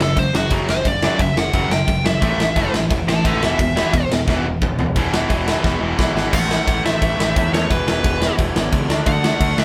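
A straight 4/4 punk rock beat at 175 BPM drives this rowdy, energetic clip in A major, with a big acoustic kit up front, its punchy kick and bright cymbals cutting through, and drum fills at 4.3 and 5.6 seconds. A nasal, overdriven lead guitar with a parked wah solos over crunchy and tight distorted rhythm guitars and a growling picked bass, while the chords move through F#5, A5, E5 and D; the tight guitar drops out at 6.3 seconds, just as the lead returns. The band sounds like it is playing live in one room, with light reverb.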